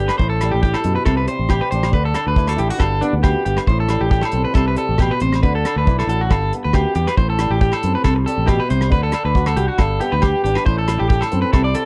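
A lilting 4/4 groove with a light swing on the sixteenths drives this joyful, carefree highlife guitar band passage, cut from a longer piece. A soul drum kit keeps time on hi-hat, kick drum and rim click, its tight kick and rolled-off top heard in a small room, while ringing agogo bells chime in the background. Up front, a round fingered electric bass anchors the low end, and a twangy electric guitar at the edge of break-up plays picked arpeggios through a slapback echo. Beneath them, a boxy fingerpicked acoustic guitar adds swing-style accompaniment, with finger squeaks audible. The harmony cycles through G, A minor seventh, C and D, and the recording has a dry, close 1970s-style studio sound with little reverb.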